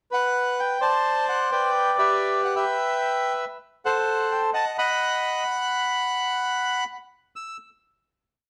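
Passionate and tense, this brief tango for solo bandoneon unfolds at 129 BPM in 4/4 with a rubato feel, the reedy instrument sitting up front in a boxy small-room sound touched by slapback echo. Its motif-based melody, built from period phrases, moves through D5, G, Em/B, Am and B chords before the bandoneon stops at 7.6 seconds, leaving a final note that hangs until 8.5 seconds in moderate studio reverb. The production is dark and warm, giving the short piece a passionate, close-up character.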